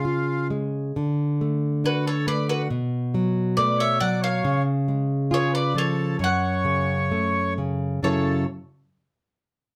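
A mellow, double-strung bowl-back mandolin carries the melody up front in this mournful, passionate fado-style ballad in F# minor. It moves at a rubato 68 BPM in 2/4 with uneven beats. A reedy, airy accordion sings a full second line beneath it, while a bright, fingerpicked nylon-string guitar gives small, up-front accompaniment through chords that settle on F# minor and then F#m7 at 8.0 seconds. All three parts fall silent by about 8.5 seconds in this fragment, cut from a longer piece and set in a wet small room.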